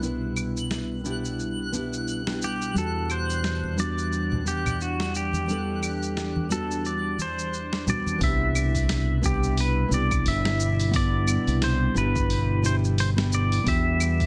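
A light digital ambience wraps this smooth, warm sunset chillout excerpt at 88 BPM in 4/4 with a gentle 16th-note swing, built on a nylon-string guitar with fresh strings and finger squeak under tape echo, an airy, breathy pad with chorus sitting in the background, a bright, punchy fingered electric bass and a gritty, sampler-style soul drum kit of claves, hi-hat, shaker and snare, all moving between Cmaj7 and Em7. A twinkling granular shimmer with its own reverb floats high above until 8.2 seconds, while a clean pedal steel guitar with slide and delay carries the melody from 2.4 seconds. Close, bright congas play in the background from 3.6 to 8.2 seconds, and a layered electronic kick enters at 8.2 seconds.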